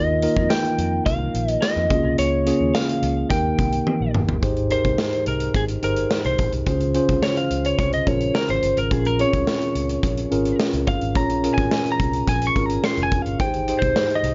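A mellow tine electric piano, a dark, slightly broken-up lead guitar with delay and a round, foam-muted fingered bass open this nostalgic, glossy 1980s-style pop excerpt, joined at 0.2 seconds by a big acoustic rock drum kit with a punchy kick, medium-tuned snare, hi-hat, tambourine and toms. After a drum fill from 3.9 seconds, the picked, compressed guitar takes a solo from 4.4 seconds to the end, sitting up front over the clean electric piano as the chords move from Abmaj7 through Dbmaj7 and Bbm7. The mix carries light reverb and a soft, rounded top end.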